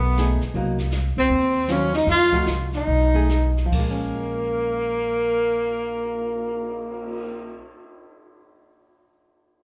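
A breathy, whispered tenor saxophone carries the melody up front, its soft attack, vibrato and scooped notes giving this short cut from a longer piece of small-group swing and bop a moody, smoky air. A clear alto saxophone, also scooping its notes, traces a second line alongside it, while a woody, thumpy pizzicato upright bass sits close at hand. A dark, clean archtop guitar, picked on a hollow-body electric, fills in the accompaniment from 0.2 seconds, and a distant jazz kit played with brushes adds dark cymbals, a medium-tuned snare and a boomy kick. The tune is in Bb minor with a swung 4/4 feel, and the tempo sits between 137 and 160 BPM, slowing from 0.5 to 3.7 seconds before a new section begins. A recital hall reverb gives the whole group a church-like spaciousness.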